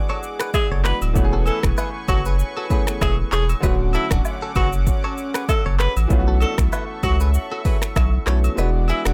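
A dry, close-sounding excerpt of joyful, sunny afrobeats at 97 BPM with a lightly swung sixteenth feel in A major, where a punchy-kicked deep house kit with dark hats, snaps, handclaps, rim clicks and shaker sits up front beside a thick, saturated sub bass, while a brilliant baby grand piano accompanies and a smooth detuned sawtooth pad with chorus and tremolo sustains the chords from E9 through Amaj9/E, Dmaj7 and B9sus4, a twangy, clean direct guitar with phaser and delay plays a riff, agogo bells and woodblock sit in the background, and a present alto saxophone with vibrato carries the melody, before the kick drops out at 8.6 seconds.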